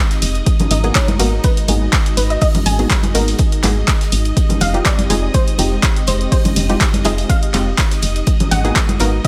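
The woody FM bass sits up front in this moody deep house excerpt at 123 BPM, a soft, round, dark line that pumps against the sidechain while an up-front, layered electronic kick punches in at 0.5 seconds. A tape-warm analog drum machine supplies handclaps and hi-hat, joined by a very quiet acoustic kit with hi-hat, ride and a medium-tuned snare, and congas played with soft hands ring out in a small room, all riding a gentle 16th-note swing. A muted, detuned dub chord stab carries a filter sweep throughout, its chorus and delay trailing behind the groove. In the background, a mellow sawtooth pad holds sustained chords that pump with the sidechain, and a shimmering, warbling vintage string machine adds a bright violin texture. Over the top, a soft round pluck with a sub octave and delay plays a gentle melody as the harmony moves from Abm9 to Fm9 and back, the whole cut wrapped in light small-room reverb.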